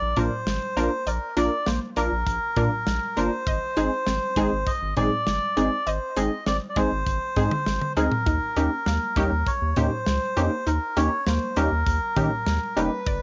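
A reedy, breathy melodica carries the tune up front through cassette tape and analog delay over a round, deep analog bass from the start, joined at 0.2 s by a punchy, funky sawtooth polysynth comp with chorus and a tight-kicked, polished studio drum kit, and at 0.8 s by a bright, detuned analog pluck playing arpeggios in the background, all driving a melancholic 100 BPM synth-pop passage in 4/4 that moves from Bb to Ab to Eb7 in a snug booth ambience with the dulled top of a home cassette recording.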